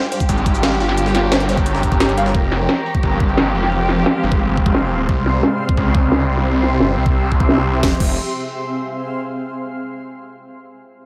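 A straight 4/4 pulse at 175 BPM drives this excerpt of dark technical drum and bass in F harmonic minor, with an overdriven knocking electronic kick and a layered kit of cracking snare, bright hats, crash cymbal and shaker running to 8.1 seconds, while a gritty, pitched-up breakbeat sampler kit sits in the background only until 2.3 seconds. Up front, a snarling, saturated sawtooth bass growls with a moving notch, as a bowed studio string section with vibrato and portamento holds sustained chords through a filter sweep, a blurred granular cloud pad evolves to 9.2 seconds, and a felt-muted upright piano with audible action noise plays brief tape-echoed arpeggios. The mood is mechanical and tense, moving from Gdim through Fm and C back to Fm, with sidechain pumping on the strings, pad and piano and a light reverb on the mix.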